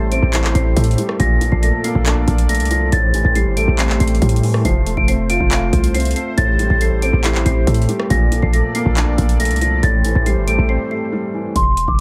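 A half-time trap beat from a booming analog drum machine, with its deep kick, metallic hats, handclaps and rim clicks sitting up front, drives this brooding, eerie hip hop excerpt, as a punchy, heavy 808-style bass hits hard beneath a muted, intimate upright piano with audible action noise, a detuned, chorused sawtooth pad holds evolving sustained chords, and a bell-like large celesta carries a delicate, ringing melody high above, all in a dry mix with a short break at 10.7 seconds.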